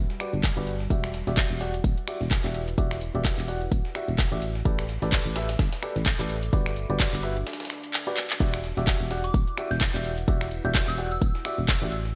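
Piano house at 128 BPM in E minor with a 16th-note swing, soulful and energetic, where a brilliant baby grand riff pumps over a round, punchy FM bass and an up-front electronic kick layered with a house kit of snaps, claps, metallic hats and shaker, while a gritty, tape-toned sampler kit with hi-hat, snare and tambourine sits in the background under a very quiet, moody sawtooth pad, the chords move from Em9 to Gmaj7 and back, a brief break with a drum fill at 8.2 seconds leads in, and a soft, pure synth bell with chorus, tremolo and delay enters at 9.2 seconds, all in a bright 1980s-style digital mix with light reverb.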